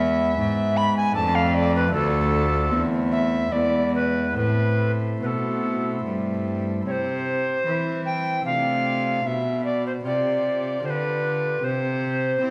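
Moving in 3/4 at 76 BPM with a supple, rubato feel, this introspective, flowing baroque-style sonata movement with continuo unfolds in A minor before settling into C major at 6.9 s. A tenor recorder carries the melody with a pure, woody, straight tone and a soft, chiffy attack. Beneath it, a pipe organ supplies light, sparkling flute-stop accompaniment in a bright baroque voicing, while a single bowed cello anchors the bass with a close, gut-string, period-style sound, airy in the bow and reedy. The harmony leans on a dominant E7 before resolving to A minor, then passes through a G7 over B on its way home to C major. A wet recital hall reverb of about 1.6 seconds lends the ensemble a spacious glow in this excerpt from a longer piece, tuned to A4 = 438 Hz.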